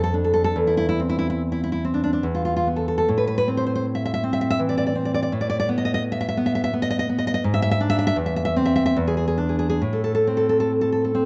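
In a flexible, rubato three-four pulse that drifts between 67 and 86 BPM, this romantic piece for solo classical guitar unfolds in A minor with a melancholic, passionate mood. A single fingerpicked nylon-string guitar carries everything, ranging from a deep E2 in the bass up to E5, with a full-bodied, warm tone and small finger squeaks audible along the way. The harmony moves from Dm/F and Cadd9/E through a bare E5 to settle on Am at 3.1 seconds, then passes through Asus2, E7/G#, C/E and E7 before returning home to Am at 9.8 seconds. The guitar sits up front in a moderate recital hall reverb with a 1.7-second decay, and the production leans dark. The passage is cut from a longer piece and lasts 11.3 seconds.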